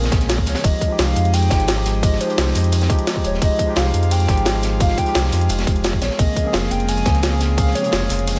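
A straight 4/4 liquid drum and bass groove at 173 BPM pairs a tight, up-front electronic kick (0.1 to 7.6 s) with a gritty, pitched-up jungle sampler kit of hi-hat, ride and high-tuned snare, while a dark, saturated breakbeat kit sits in the background behind high-pass filters. A deep, full sub bass with an octave anchors the chords moving from Bbm9 to Fm9 and back. Above it, a bright, clean tine electric piano with dub echo, an airy, breathy pad pumping in the background, and a hollow, woody clarinet-like synth lead with vibrato, chorus and delay give this short, dry cut a dreamy, lush mood.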